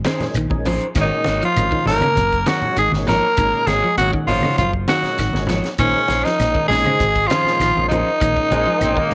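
Afrobeat at 99 BPM in Ab mixolydian, hypnotic and funky, built on a tight funk kit with a high-tuned snare, a round, punchy fingered bass and very quiet congas, claves and shekere, while two slightly broken-up electric guitars play stabs and dark arpeggios in the background over a fat, lightly overdriven tonewheel organ with key click and slow rotary. At 1.0 s a raspy, gritty tenor saxophone takes the melody up front, joined by a smooth alto saxophone second line, as the harmony moves from Bbm11 to Ab9sus4 and back. A bright, loose, vintage trombone section enters at 8.5 s, and a moderate spring reverb colours this excerpt cut from a longer piece.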